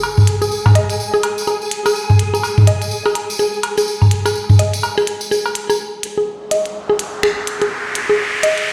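Bathed in stone-room reverb as if played through a big sound system in a bare room, this cool, quirky minimal techno cut at 125 BPM with swung 16ths puts up-front analog cowbell, toms and woodblock with delay alongside a distant, jingly tambourine and a grainy, flickering granular texture, over a clicky minimal drum kit of finger snaps and hi-hat, while a woody, round FM mallet pluck with chorus and digital delay carries the riff through filter sweeps, and an electronic impact opens the piece before a riser drives the build-up from 6.4 to 8.7 seconds.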